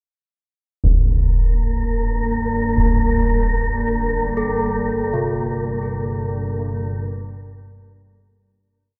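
Ominous and dark, this short, complete dark ambient drone piece moves at 62 BPM in 4/4 and rests on a single G minor add-nine chord. A concert bass drum opens at 0.8 seconds with distant, slow hits, its sound close, dry and up front, with a low-pass filter taming the kick. A breathy, wind-like tuned noise texture follows at 1.5 seconds, an airy held high note sitting up front in its own reverb. Beneath it, a mellow organ-like drone fades in from 1.8 seconds, sustained on unison wave-folded sine tones with ensemble chorus and reverb. From 4.4 seconds a bronze, gamelan-type metallophone played with a wooden mallet rings out in delayed arpeggios, two slow loops of unequal length drifting against each other. The whole piece sits in a huge ambient reverb with a long 7.5-second tail, and a fade-out begins at 4.7 seconds.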